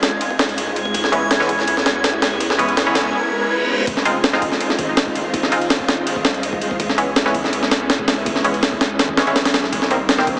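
Squeezed through a heavily compressed, small-speaker radio sound with a wet plate reverb, this frenetic, atmospheric drum and bass and jungle excerpt in F minor at 164 BPM opens with a dreamy reversed texture, silky string-machine chords, a deep, round dub sub bass in the background and the gritty, overdriven, pitched-up sampler-style drum kit up front with its thumpy kick, snare and ride cymbal. A very quiet electronic riser and reverse cymbal enter at 0.7 seconds, and nasal, band-passed chord stabs with dub echo join at 1.1 seconds before the drop at 3.9 seconds, all over a cycle of Fm7, Dbm7 and Cm7.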